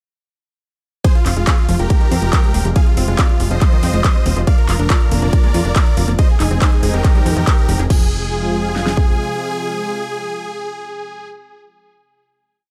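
This short, emotional uplifting trance piece bursts straight into its drop at 1.0 seconds with a huge, euphoric supersaw lead playing a repeating riff in thirds and sixths over a pedal note. It is carried by a lush, warbling vintage pad, a tight sequenced arpeggio in the background and an up-front, overdriven big-room kit with a punchy four-on-the-floor kick, a huge snare, metallic hats, claps, ride and crash. The lead, pad, arpeggio, hats and cymbals pump under sidechain, with delay on the lead and arpeggio. A tight, galloping sawtooth-and-square sequencer bass with ring modulation, tube saturation and sidechain pumping drives underneath from just after the drop. The hats, claps, cymbals and arpeggio fall away around 8 seconds, and the kick, snare and bass follow around 9.1 seconds, leaving the lead and pad to ring out on the final chord in a dark, dry mix.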